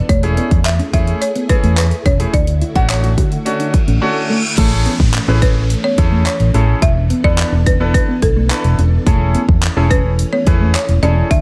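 A dry, close and up-front mix opens this carefree, summery dance-pop excerpt in A major at 107 BPM, where a woody, rustic folk marimba with medium hard mallets carries the melody through a delay. Beneath it, a punchy pop drum kit with crash, handclaps, warm hats and kick plays alongside a round, foam-muted vintage bass. A brilliant concert grand piano, a clean, mellow electric guitar riff with lush chorus, and full-bodied organ-like string chords in the background fill out the arrangement, with the bass, piano and strings pumping under sidechain. A very quiet, jingly tambourine appears between 0.7 and 3.0 seconds, and a reverse cymbal at 3.8 seconds leads into the second section at 4.6 seconds, where the chords move through Amaj7, E7sus4 and back to Amaj7/E.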